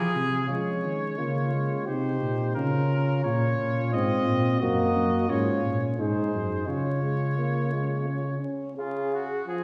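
A mellow tuba sits up front in this serious, driving classical canzona for brass ensemble, anchoring the bass with light vibrato until it drops out at 8.4 seconds. Above it, a clear trumpet carries the melody with vibrato, sounding distant and roomy, while a flugelhorn shapes the second line with a smooth top. A vintage-toned, warm euphonium joins at 0.5 seconds to fill in the accompaniment. The imitative writing moves at 87 BPM in 3/4, settling into Db major from 4.6 seconds. The ensemble is heard from further back in a scoring-stage reverb, with vinyl crackle and a dulled upper end giving this fragment of a longer piece an aged character.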